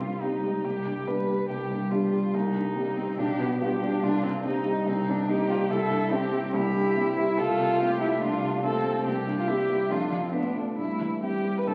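Quick classical-period piano trio movement, spirited and cheerful, cut from a longer piece, in which a veiled con sordino violin carries the melody with vibrato and portamento over a close, muted cello second line, while a mellow, intimate baby grand, up front with audible action noise and short sustain, supplies the accompaniment, all set in a reverberant recital hall and heard through the crackle of a very old 78 rpm record.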